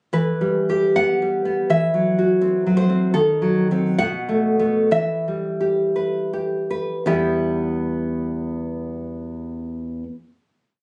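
Passionate and melancholic, this short romantic piece for solo classical guitar unfolds in E minor with a free, rubato feel in 2/4, its tempo drifting between 52 and 83 BPM. A nylon-string guitar, full-bodied and up front, carries everything alone from 0.1 to 10.0 seconds, fingerpicking a single-line melody over broad broken chords that reach from the low E2 up to F#5. The harmony moves from Em through Esus2 and a tense D#dim7 to B5 before settling back on Em at 4.9 seconds. The playing slows down between 2.4 and 7.1 seconds, and the piece closes on a final chord held from 7.1 seconds. The sound carries a light reverb and compression, with the intimate air of a phone recording made in the room.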